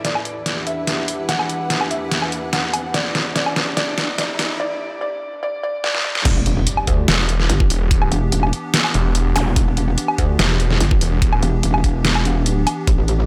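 Heavy wobble dubstep in a half-time feel, chaotic and menacing, cut from a longer piece. It opens on a build-up over an Em7 chord: a soft, felt-muted upright piano carries the melody through low-pass filtering and digital delay, while an evolving, warbling wavetable pad pumps underneath with chorus and its own reverb, a lush bowed string section sits in the background, and a riser climbs alongside drum fills from a deep-snared, room-recorded kit with crash, hi-hat and woodblock. The strings and riser drop away at 4.6 seconds for a brief break before a final fill. The drop lands at 6.3 seconds with an impact, a knocking layered electronic kick and a metallic, saturated FM wobble bass thick with chorus and overdrive, the bass placed up front. From 7.1 to 11.4 seconds a snarling, detuned sawtooth bass growls on a low E with a moving notch and heavy distortion, stacking aggression onto the low end while the pad keeps pumping beneath.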